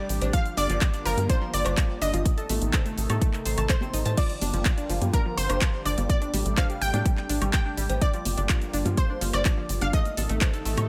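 A unison pluck melody, a soft synth bell line, a lush pad and an analog pluck arpeggio all open together, every one of them pumping against the sidechain in this bittersweet, dreamy progressive house passage at 125 BPM in G minor, cut from a longer piece. The lead pluck is bright and detuned, ringing between Bb4 and G5 with a ring-modulated edge and a digital delay trailing behind it. Above it, the FM bell warbles gently in the background, pure and full-bodied, while the thick, airy pad holds sustained chords beneath. The round analog pluck spreads its arpeggios from F3 to A6 through chorus and phaser. A tight, nasal sequencer bass with tube saturation drives from 0.1 seconds, joined by an overdriven big-room kit of claps, hi-hat, shaker, woodblock and crash, and by band-limited vintage cowbell and congas tucked behind. A punchy, layered electronic kick sits up front from 0.3 seconds as the chords cycle through Gm7, Adim and D7sus4/A.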